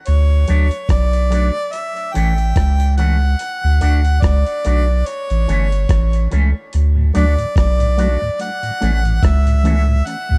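A close-miked harmonica carries the melody in this sunny, laid-back roots reggae excerpt, its notes scooped and touched with light vibrato and trailed by tape echo. Beneath it, a deep, round dub sub bass sits up front with a soft, sustained tone. A gritty, compressed sampler-style kit supplies hi-hat, rim click and a thumpy kick with a gentle swing, and it also carries tape echo. An electric guitar with an envelope filter adds dark, clean, picked accompaniment from 0.5 seconds, with tube saturation. At 7.0 seconds a mellow, flute-like tonewheel organ joins with chorus vibrato and key click as the harmony moves between D and A. The dark, warm, dry production keeps the whole cut relaxed.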